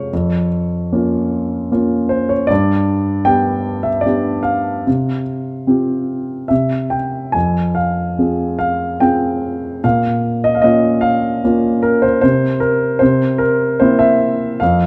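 A lone grand piano opens the recording on a B-flat minor chord over F, setting a dark, melancholic mood in this lyrical classical solo piece, cut from a longer work. The tempo hovers around 75 BPM in 3/4, but the beats are uneven and the phrasing breathes with rubato. The piano sounds intimate and natural, sitting up front with the clatter of its action clearly audible as it spans from F2 to Ab5. The harmony moves through G and Csus4, falls away into a chordless moment at 6.5 seconds, then settles on F minor and B-flat minor before landing on C7 at 13.0 seconds. A moderate recital hall reverb and a dark, warm production surround the instrument, which is tuned to A4 = 442 Hz.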